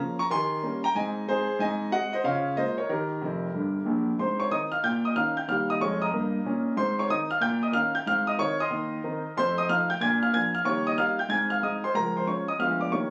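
A swinging 4/4 stride groove at 185 BPM in Ab major drives this playful jazz excerpt, where a solo concert grand piano, warm, up front and rich in deep bass across a span from F1 to Ab6, moves through chords like Eb7, Db6, F7 and Ddim7, drops a fill at 3.2 seconds before the second section begins at 4.2 seconds, and sits in light reverb with the natural ambience of a phone recording made in a studio room.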